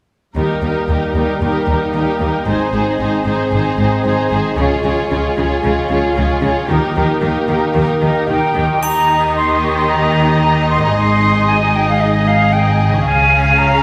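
An airy, close-miked concert flute enters at 8.0 s with an expressive second line over a triumphant, soaring heroic adventure film score at 113 BPM in 4/4, where dark, lush violin sections with vibrato carry the melody and a second line, the latter with portamento, above rich, smooth violas, intense cellos and woody double basses, while mellow, distant French horns hold sustained chords until 8.5 s, a ringing, very quiet harp adds arpeggios from 8.6 s, and a soft, dark-toned triangle sounds briefly, all in a wet recital hall reverb.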